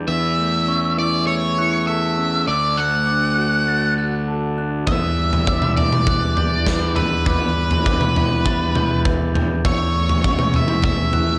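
Post-rock in E dorian at 100 BPM, this cathartic, cinematic excerpt sets a dark octave-fuzz lead guitar melody over twangy, lo-fi guitar arpeggios from a small old amp, mellow bell-like glockenspiel arpeggios and a round, overdriven fuzz bass, moving through A/E, D and Em7 in a lush hall with a big arena sound, while a punchy, acoustic rock drum kit with kick, snare and toms joins at 4.9 seconds.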